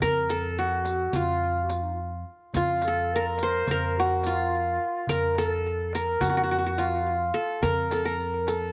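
A bright-edged, plectrum-plucked qanun with tape echo carries the melody up front in this soulful, longing Turkish makam ensemble excerpt in F makam hicaz, moving in 9/8 at 213 BPM in eighths, while a dark, breathy clarinet with vibrato and scooped notes sings a distant second line in the background, a woody pizzicato upright bass holds F2, a small clay-shell darbuka played with soft hands sits further back, and a close, dry riq adds jingling shimmer, the ensemble set inside a wet spring reverb.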